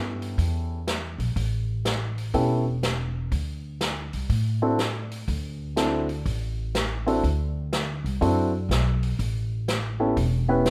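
A warm baby grand piano plays accompaniment in this joyful, swinging big band jazz excerpt, sitting in its middle register close to the listener at 123 BPM in 4/4 with a swing feel on the eighth notes. Beneath it, a woody, thumpy upright bass is plucked on steel strings, sitting up front and holding down the low end from the first moment. A swinging big-band drum kit joins at 0.2 seconds with hi-hat, a boomy kick and a medium-tuned snare, captured naturally in a studio room. The harmony rests on A9, moves to D9 at 3.3 seconds, and returns to A9 at 9.2 seconds. Light reverb gives the short passage a gentle sense of space, and it ends as it is cut from a longer piece.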